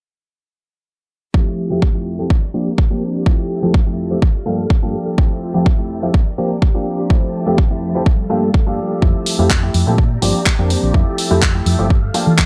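A dry, gritty hardware recording of sunny, feel-good filtered disco house, cut from a longer piece, in which a filter sweep runs throughout as a punchy, up-front electronic kick thumps beneath a clear, worn baby grand piano and a lush sawtooth string machine in the background, both phased and sidechain-pumped on Fmaj9, Bb6 and Gm9 chords, while a clean, compressed electric guitar riff carries vintage 12-bit sampler texture, before a dark, round hollow-body bass with tube saturation enters at 9.0 seconds and a house kit of handclaps and hi-hat joins at 9.3 seconds.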